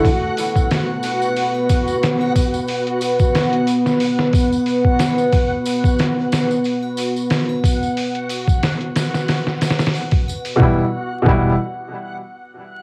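Smoky and melancholic, this trip hop fragment is cut from a longer piece and moves at 91 BPM in 4/4 with a light swing on the sixteenths. A gritty, pitched-down sampler-style drum kit sits up front from the start, its thumpy kick, medium-tuned snare and hi-hat compressed and tape-warm under studio reverb and cassette grit. Over the opening chord of B5, a deep, moody ambient pad holds sustained chords with a slow attack and long release, its detuned, wave-folded tone thickened by chorus and reverb, while a reversed, granular texture swells dreamily, bright and detuned, and bright, close tambourine and triangle add dry accents. At 10.6 seconds the harmony shifts to Em as the felt-muted upright piano comes forward, soft and intimate with tremolo and tape echo, joined by a round analog bass on a deep, dark E1 low in the mix. The whole recording has the hazy feel of a home cassette, with vinyl crackle and light reverb around it.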